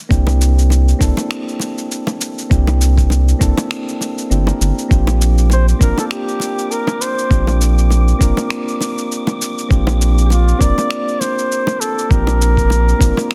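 Soft, mellow electric-piano-like synth keys with chorus and digital delay play from the start of this relaxed sunset chillout excerpt at 100 BPM over C9 and then Bb69 chords, together with a deep, round analog bass sitting up front and a gritty, overdriven sampler-style kick and cabasa with finger snaps in a swung 4/4, with close, dry, low-tuned acoustic bongos entering a moment later. At 5.3 s an airy, wind-like tuned noise texture drifts in the background with its own reverb, and at 5.5 s a breathy jazz-style flugelhorn solo takes the melody with vibrato, scooped notes and a touch of delay. The digital ambience and dense, heavily limited modern master keep the mood laid-back and warm.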